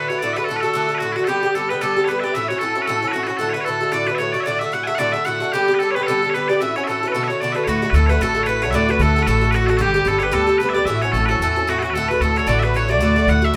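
A live-in-one-room studio recording with moderate reverb carries this rollicking, cheerful Celtic reel in D major at 225 BPM with a swung feel, where piercing bagpipes lead the melody up front, a reedy, shimmering musette accordion plays a second line, a metallic, double-strung bouzouki picks the accompaniment through chords of D, G and A6, and a woody, dark pizzicato upright bass joins at 7.7 seconds as the tune repeats.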